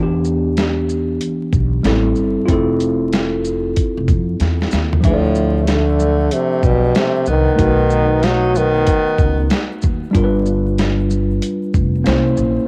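Jazz-hop cut from a longer piece, with a mellow, smoky mood, where a worn, slightly out-of-tune tine electric piano and a woody pizzicato upright bass sit up front over a gritty, overdriven sampler-style drum kit with a thumpy kick, and after a drum fill at 4.4 seconds a very quiet egg shaker and congas join at 5.0 seconds as a breathy trombone melody with vibrato and scooped notes enters at 5.1 seconds beside a soft-attack subtone tenor saxophone line with tape echo, framed by vinyl crackle and small room ambience.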